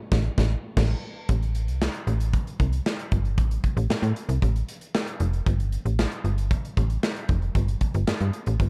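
The recording is dry, dark and up close, with a warm production that keeps both parts up front. This slick, danceable slice of early-eighties boogie funk runs at 115 BPM in a straight 4/4, sitting in A minor with tuning at A4 = 437 Hz. A slap-like FM bass carries the low end from F1 to A2, its digital tone snappy with a fast, metallic attack that then decays. Alongside it, a modern studio drum kit with an acoustic character plays kick, snare, hi-hat, handclaps and crash cymbal, pairing a tight kick with a medium-tuned snare inside a pumping studio room. The band hits an accent in the opening stretch up to 1.3 seconds before settling into the main groove that carries through to 8.7 seconds, where this cut from a longer piece ends.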